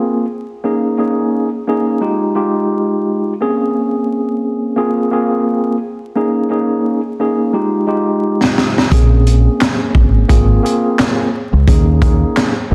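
A mellow tine electric piano opens this dark, reflective boom-bap hip-hop excerpt at 87 BPM with a swung 16th feel, filtered and up front as it cycles through Ab6/9, Eb7sus4, Fm9 and Bbm9 chords over vinyl crackle. At 8.4 seconds a gritty, saturated breakbeat kit enters with a fill, bringing a tight kick, high-tuned snare, hi-hat and handclaps with a rolled-off top. A deep, round fingered dub bass follows at 8.9 seconds, all set in a small room with an echo-chamber reverb and a dense, heavily limited modern master.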